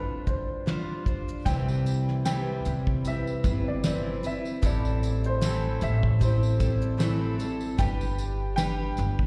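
A dark, boxy upright piano carries the melody over a full-bodied, double-tracked fingerpicked steel-string guitar from the opening of this carefree, sunny acoustic pop piece in C major, both touched by slapback echo and the piano also by tape echo. A cloth-damped drum kit with a fat snare, tight kick and shaker thuds in at 0.3 seconds, and at 1.5 seconds a woody, growly pizzicato upright bass and a faint, jingly tambourine join as the harmony moves from G7sus4 to Cmaj7, Am7 and G. At a relaxed 76 BPM with a light 16th-note swing, it sounds like a live gig heard through the venue's PA, set in recital hall reverb.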